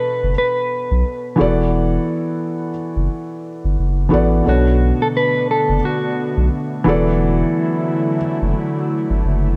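Hip hop in a nostalgic, melancholic mood, this short cut from a longer piece pairs a dark, clean electric guitar melody with a soft, felt-muted upright piano whose action noise sits close in a cassette-tinged, vintage haze, while a deep, saturated sub bass anchors the swung groove and a detuned analog pad with subtle chorus drifts in at 4.5 seconds over chords moving between Bm9 and E9sus4.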